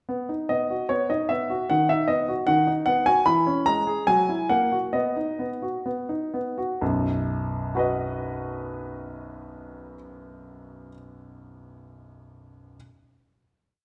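A grand piano opens this short, complete classical-period sonatina in B major, playing a single-line melody over a broken-chord bass in 2/4 at a rubato 62-78 BPM, with an elegant, cheerful air. The instrument sounds clear, intimate and natural, placed up front with audible action noise and surrounded by a wet recital hall reverb. From 2.5 seconds the phrase slows down through C#m7/E and F#7 back to B, and a final chord begins at 6.8 seconds, with the piano sounding until 12.8 seconds.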